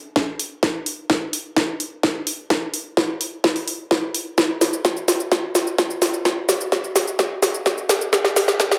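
A wet digital room reverb, high-pass filtered, wraps this short EDM clip cut from a longer piece, giving it a euphoric, powerful charge at 128 BPM in a straight 4/4. The whole passage from 0.0 to 8.8 seconds is a build-up carried by a drum fill. An electronic kick drum, punchy and layered, runs from 0.2 to 8.7 seconds, shaped by a high-pass filter. Alongside it, a house drum kit of hi-hat, shaker and snare sits up front, overdriven and re-recorded in a large room, with a cracking snare. The produced, layered drums fill the clip with the rising energy of a build-up.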